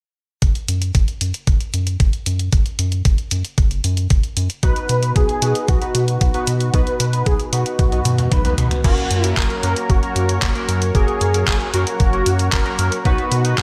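Lightly reverberant and danceable, this romantic italo disco passage at 114 BPM opens at 0.4 s on a thumpy, up-front electronic kick, a tape-tinged, detuned 8-bit drum machine of crash, handclaps, hi-hat and toms in gated reverb, and a deep, nasal analog bass with tube saturation under a filter sweep; a bold, wave-folded unison lead with vibrato and digital delay and a glossy chorused polysynth with tape echo arrive on a B chord at 4.6 s, and a drum fill ushers in a lush, warbling pad on F# at 8.8 s.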